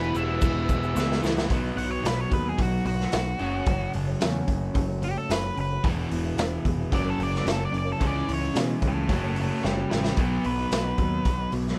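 A dry, close-sounding cut from a longer classic rock piece, driving and swaggering at 111 BPM in a straight 4/4. A raw garage drum kit sits up front, saturated and gritty with a punchy kick, a medium-tuned snare and a pumping small-room sound, and it plays fills around 1.0 and 9.6 seconds. Beneath it, an overdriven electric bass growls bright and direct, while two overdriven electric guitars, one crunchy and one compressed, churn out riffs in the background alongside a shimmering, octave-doubled twelve-string acoustic guitar that is fingerpicked. A very quiet, thick tonewheel organ with slow rotary vibrato and a grainy egg shaker are heard only in the opening moments, while the dark, distorted octave-fuzz lead guitar carries the melody from the start and launches into a solo at 1.5 seconds. The chords move from E through B, F#m, E, F#, C#m and F#m, arriving on B at the close.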